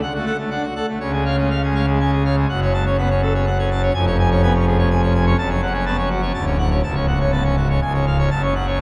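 Stormy and majestic, this brief classical organ toccata in F# minor moves at 123 BPM in a straight 3/4. A solo pipe organ on full organ carries the whole passage from 0.0 to 8.8 seconds, its mixtures giving a brilliant edge to a romantic voicing that spans from C#1 up to A5. The organ sits up front, yet the sound is soaked in a cathedral reverb with a 4.5-second decay, and the production leans dark. After an opening on D and C#, the harmony settles at 2.5 seconds into F# minor, passing through C#/E#, Dmaj7 and F#m/C# before landing on C#. Cut from a longer piece, the fragment ends on that chord.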